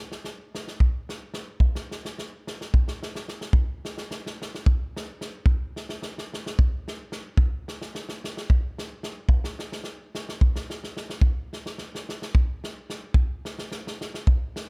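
Virtuosic and exuberant, this Balkan folk passage, cut from a longer piece, drives along in a straight 7/8 at 219 BPM counted in eighths. An acoustic drum kit carries it from 0.1 to 14.6 seconds: a punchy kick and a medium-tuned snare sit up front with a natural studio-room sound. The dry recording changes section at 3.5 seconds.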